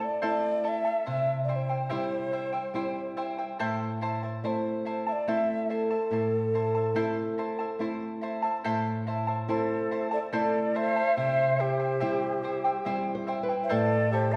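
A church-like hall surrounds this short excerpt from an Andean folk piece with a long, wet reverb, while the plucked strings sit up front. At 71 BPM in a straight 3/4, in A minor and tuned to A4 = 445 Hz, the mood is festive yet melancholic, moving mostly between A minor and C. An alto ocarina carries the melody with a clay, airy tone, tongued notes, vibrato and rolled-off highs, phrased expressively. Beneath it a fingerpicked charango shimmers with its double strings, some doubled at the octave, while a small, dark nylon-string guitar, also fingerpicked, adds a fill from 12.4 to 13.7 seconds. At 9.5 seconds a large quena enters with a reedy, bright second line, its end-blown wooden tone close-miked with audible chiff and vibrato.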